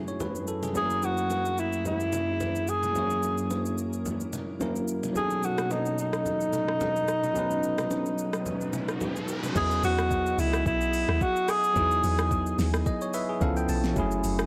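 A blown-out, overdriven recording with light reverb frames this relaxed, soulful amapiano excerpt in E major at 109 BPM, its 16ths carrying a gentle swing. A bright, bell-like tine electric piano and a glassy, ethereal FM pad with a warbling vintage chorus carry the chords from the start, while a smooth R&B drum kit with a soft kick, fat snare, metallic hats, rim click, shaker and crash adds its own overdriven grit. Ringing bongos and congas sit distant in the background, and from 0.8 seconds a breathy alto saxophone with light vibrato takes the solo melody up front, trailed by digital delay. An electronic riser runs from 8.3 seconds into a drop at 9.6 seconds, where a deep, round log drum bass enters with dark, percussive, decaying hits and the harmony settles on Emaj9. The electric piano plays a short fill near the end, as the cut closes on a C#7alt chord.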